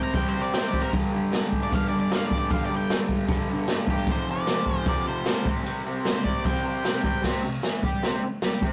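Garage rock in straight 4/4, this raw, swaggering excerpt sounds like a small band caught mid-song in a rough rehearsal room, with the saturated recording lending a gritty glow to the whole. A double-tracked fuzz guitar sits up front carrying the picked riff through the low and middle register, while a dark octave-fuzz lead guitar plays the melody above it with a slapback echo trailing each note. The drums are a jazz kit played with brushes, heard close and natural in a small room, with a boomy kick, a medium-tuned snare and dusky crash cymbals. The harmony moves through C5, G5 and F5 before settling back on C5, and the lead drops out at 7.2 seconds, leaving the riff and drums to carry a short new passage until 8.7 seconds. A moderate studio reverb gives the playing a modest sense of space around its rough edges.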